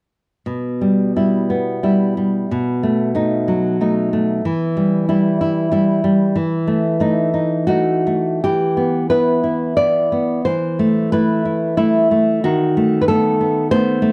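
Intimate and wistful, this short excerpt of a romantic solo classical guitar piece in a rubato 3/4 features a full-bodied, fingerpicked nylon-string guitar with fresh strings, sitting up front in a dark production and carried by the moderate reverb of a recital hall as its harmony moves from Em/B through B7, D#dim and Am/E to close on B7/D# at 12.4 seconds.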